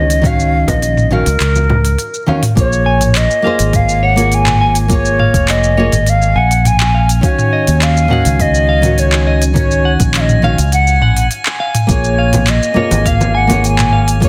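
A hollow wooden flute carries the melody with a pure tone, vibrato and a crisp attack, echoed by digital delay, over a fingerpicked nylon-string guitar with a full-bodied classical depth and an up-front fingered electric bass, in a relaxed sunset chillout groove at 103 BPM in Bb minor, moving between Ebm9 and Bbm7. A produced, overdriven beat pairs a soft electronic kick with a smooth R&B kit of crisp hi-hats, handclaps, shaker and toms, while ringing congas played with hard hands sit in the background at 0.7 seconds and again near the end. From 2.9 seconds a bright, twangy clean electric guitar picks delayed arpeggios, and at 3.7 seconds a calm, glassy harmonics texture with drifting overtones and chorus settles in beneath the dense, heavily limited mix of this warm excerpt from a longer piece.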